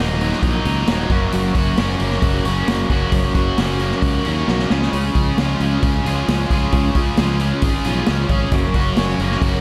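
Two overdriven, bright cranked-stack electric guitars drive a gritty, brooding classic rock riff over a picked, full-bodied steel-string acoustic in the background and a direct fingered electric bass, while a vintage acoustic drum kit with punchy kick, medium-tuned snare, hi-hat and a rolled-off top comes in at 0.2 s, plays a fill at 4.5 s, and sits in light reverb.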